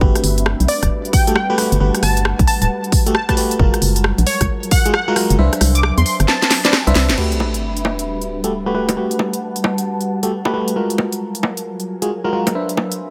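Set in a light, digital ambience, this excerpt from a longer track is a sunny, soulful slice of two-step UK garage at 134 BPM in G major, with a 63% swing on the sixteenths. Glassy, bell-like FM electric piano stabs warble through chorus, filtering and delay over maj9 chords moving from G to F# to C. Alongside them, an ethereal, airy pad drifts softly with ensemble chorus, reverb and sidechain pumping. A hollow, dark, organ-like FM bass and a punchy electronic kick sit up front beside a house kit of cracking snare, crisp hats, rim clicks, bongos and crash cymbal. From 0.7 seconds a catchy, detuned plucky unison lead carries the melody through its own delay, and a drum fill from 6.3 seconds leads into the second section at 7.2 seconds, where the bass falls away and an electronic sub drop lands as an impact.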